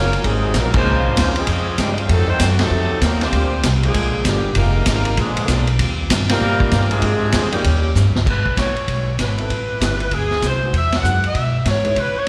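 A swung 4/4 groove drives this sultry big band excerpt, where a bright, loose saxophone section carries the melody over a trombone section in the background that drops out at 7.9 seconds, a clear but very quiet grand piano, a very quiet picked steel-string acoustic guitar, a woody, thumpy upright bass and an up-front vintage drum kit with a punchy kick, all heard as a live gig through the venue's PA in a recital hall with slapback echo on the horns, band accents and a drum fill at 8.0 seconds leading into a new section.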